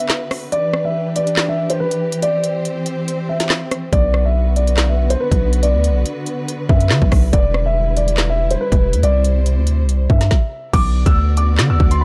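A deep, sine-toned 808-style bass arrives at 3.9 seconds with long, decaying notes in this cold, tense drill excerpt at 141 BPM, set in a half-time feel in B phrygian, sitting up front beside an electronic kit of hard-clipped kick, woody snare, crisp hats, handclaps, rim clicks and crash, while a dark, boxy, low-passed grand piano carries the melody above lush, bowed symphonic strings that hold sustained chords with vibrato, in a dry, dark mix broken by a brief stop at 10.3 seconds.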